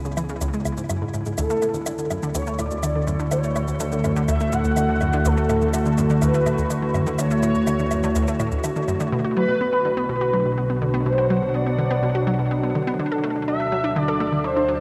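This excerpt from a longer piece opens with an evolving wavetable pad fading in over its first 9.1 seconds, its vintage, warbling sine tone sustaining chords from C#m7 to Dmaj7 under chorus and its own reverb. Underneath, a fat, saturated analog bass holds the low end, while a detuned analog pluck with a bright, up-front sawtooth edge plays a riff through chorus and delay, joined by dry, tape-warm shaker and woodblock until 9.1 seconds. This is hypnotic, sequencer-driven space music at 124 BPM in a straight 4/4, with a cosmic mood. An expressive portamento lead enters at 1.4 seconds, carrying a smooth, dark melody with vibrato through ensemble chorus and delay. At 9.1 seconds the music settles into B phrygian, moving from Bm to D, and the whole mix sits in a vast, echoing cathedral reverb.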